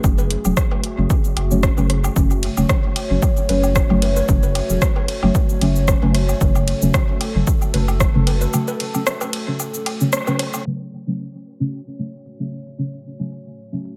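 A lightly swung 4/4 groove pairs a punchy, overdriven electronic kick up front with an overdriven deep house kit of hi-hat, ride cymbal, rim click and shaker, giving this dub techno a cavernous, nocturnal feel; woodblock and cowbell sit in the background with sidechain pumping and dub echo. A round, sine-toned analog bass and soft, wave-folded chord stabs drenched in chorus, phaser, cassette tape and dub echo ride over a moody, detuned pad with a slow attack, inside an echo-heavy, low-pass filtered mix with light reverb. The kick stops at 8.1 seconds and the bass at 8.5 for a break. Filter sweeps move across the stabs throughout, and from 10.7 seconds a sweep also moves across the pad.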